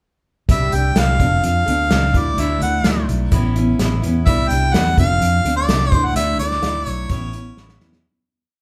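A moderate large-studio reverb surrounds this short folk rock and heartland rock piece, recorded as a band playing live in one room. It moves at 127 BPM in a straight 4/4 with a jangly, open-road mood. A clear, punchy harmonica sits up front with a pop-style solo melody built from song-like motifs, while a bright, full-bodied jumbo steel-string acoustic guitar supplies folk strumming in open chord shapes, with a touch of finger squeak. A dark, round fingered electric bass, direct and amped, drives eighth notes underneath, and an acoustic drum kit with a small-room character, played with bundle sticks, lays down a big rock groove of hi-hat, tight kick and medium-tuned snare. The verse cycles through Cadd9, F6, Dadd9 and Aadd9 twice before a fade-out begins at 6.2 seconds, with a drum fill at 7.6 seconds closing the piece.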